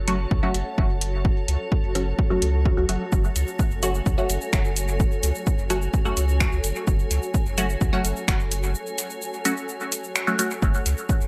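Cavernous and nocturnal, this dub techno excerpt in F# minor moves at a straight 128 BPM, resting on a single F#m chord as a soft, round sub bass and a granular cloud pad, blurred and evolving in its own reverb, both breathe with sidechain pumping beneath a muted, detuned chord stab up front whose phaser and dub echo carry it through an echo-heavy space, while a punchy, tape-warm electronic kick enters at 0.3 seconds to join a deep house kit of finger snaps, metallic hats and shaker, overdriven and re-recorded in a large room.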